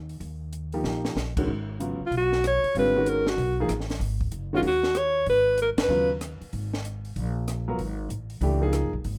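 A swung 4/4 pulse from a dry cocktail drum kit with dark cymbals, a high-tuned snare and punchy kick, plus a woody, thumpy pizzicato upright bass, drives this searching, spiritual modal jazz excerpt, with an early drum fill, while a clear, vintage concert grand piano accompanies and a breathy, close-miked alto saxophone with light vibrato carries the melody from 2.1 to 6.1 seconds, the band hitting an accent at 5.7 seconds in a rough home demo mix with moderate room ambience.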